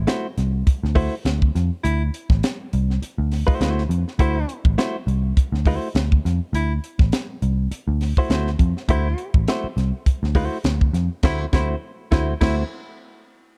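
A strutting funk groove at 102 BPM in 4/4 opens this cut from a longer piece, its sixteenth notes carrying a light swing as it settles on a D9 chord in D mixolydian. A crisp fusion drum kit sits up front with a tight kick, a high-tuned snare, hi-hat and crash cymbal, its airy studio-room sound polished. From 0.0 seconds a vintage muted picked electric bass shares the front, foam-muted, round and dark through its amp, holding the low end between A1 and F2. A clean, picked electric guitar recorded direct adds compressed accompaniment in a higher register, and at 1.8 seconds a baritone saxophone joins as a quieter second line, a smooth-topped, punchy solo voice with vibrato in a pop style. The production is dry and dark with a warm cast, and the band hits a shared accent from 11.2 seconds to the close.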